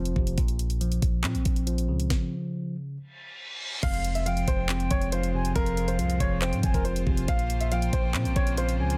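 Trap hip hop in F minor at 139 BPM with a half-time feel, eerie and brooding, in which a bell-like, clean tine electric piano, a deep, boomy 808-style bass and an up-front trap kit of knocking kick, sharp snare, bright hats, handclaps and crash break into a stop at 2.1 seconds, a reverse cymbal sounds at 3.1 seconds, and from 3.8 seconds a smooth, vintage grand piano carries the melody with tape echo while a distant, airy concert flute adds a second line with tape echo and a chamber string section holds rich sustained chords in the background, all within a dense, heavily limited, dry modern master.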